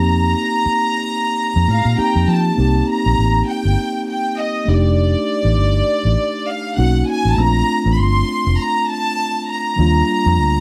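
A clear studio violin section carries the melody in a pure, floating, sul tasto tone. A mellow tine electric piano comps through its built-in speakers, and a dark, foam-muted fingered electric bass sits round and punchy up front, all opening together in this lush, romantic 1970s-style soul passage with a lightly swung sixteenth feel. The harmony moves from F9sus4 into a new section at 2.6 seconds, passing through Cm7 and F13 before settling on Bbmaj9 and Ebmaj9, all bathed in studio reverb, in this fragment of a longer piece.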